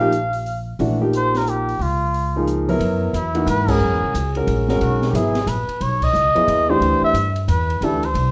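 A veiled, cup-muted trumpet carries a softly attacked solo melody with light vibrato over an intimate grand piano whose action noise is audible, a woody pizzicato upright bass, and a drum kit of dark cymbals, high-tuned snare and boomy kick in this searching, spiritual modal jazz excerpt in a swung 3/4, set in a club reverb heard from further back in the room, with band accents at 3.6 and 6.0 seconds.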